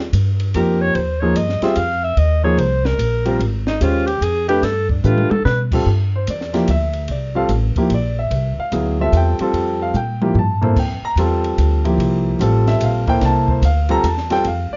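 A lilting 3/4 swing at 147 BPM opens this open, searching modal jazz excerpt, cut from a longer piece. A woody, pizzicato upright bass with steel strings sits up front, while a compact cocktail drum kit in a small room brings a punchy kick, a high-tuned snare, hi-hat, ride, crash and toms with a smooth, rolled-off top, plus two short fills. A natural-sounding grand piano accompanies up front through the whole passage. A breathy alto saxophone with a vintage subtone carries a jazz solo from 0.6 s to 5.6 s, moving over Eb, Ab and G7 chords. At 5.9 s the harmony settles on C7sus4, and the music shifts into C mixolydian for the rest of the passage. Light reverb and a dark, warm production round off the sound.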